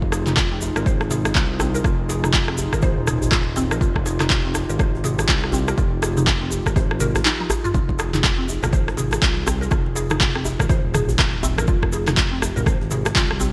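A punchy, layered electronic kick sits up front in this earthy afro house groove at 122 BPM in F minor, swung on the sixteenths and cut from a longer piece. Beside it, a tape-warm afro-pop drum kit adds handclaps, rim clicks and toms, with a short drum fill at 7.3 seconds. A smooth sawtooth-and-triangle synth bass glides with portamento and vibrato under tube saturation. A dark, nasal, detuned analog pad holds an Fm9 chord with a slow attack, long release and chorus, pumping against the kick alongside the bass. Further back, a woody, round FM mallet pluck plays arpeggios through ensemble chorus, 12-bit sampler grit and digital delay. A cracking djembe with metal rattles and a grainy tube shaker fill in the percussion, very quiet bright congas join at 7.9 seconds, and the whole mix has a crisp 1980s-style digital sheen with light reverb.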